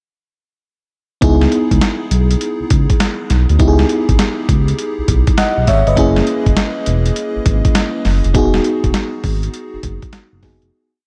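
New jack swing R&B at 101 BPM in C# dorian, bouncy and confident, with a hard-swung, gritty boom bap drum kit that is overdriven and thumpy, paired with a smooth, sawtooth-edged synth bass carrying a bouncy swung line with muted ghost notes and chromatic approach notes. A lush, dreamy FM electric piano with a soft pad layer holds rootless chords through chorus and tremolo, adding grace notes and short fills as the harmony moves from C#m9 to F#9 to Emaj9. The whole piece is a single verse from 1.2 s, with a dark production and light digital ambience, and it fades out from 8.3 s to 10.7 s.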